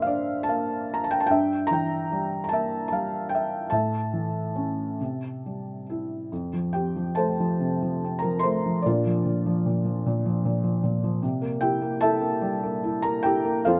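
A rubato 6/8 lilt of roughly 45-51 BPM in dotted quarters carries this reflective, wistful excerpt of lyrical classical solo piano, where a felt-muted upright with a soft, mellow, intimate tone sits up front under close, detailed microphones and light reverb, spanning F2 to C6 and tuned to A4 = 439 Hz, as it drifts through Gm7, Edim/G, A and C before settling into F major at 6.3 s and moving through Bb to C7.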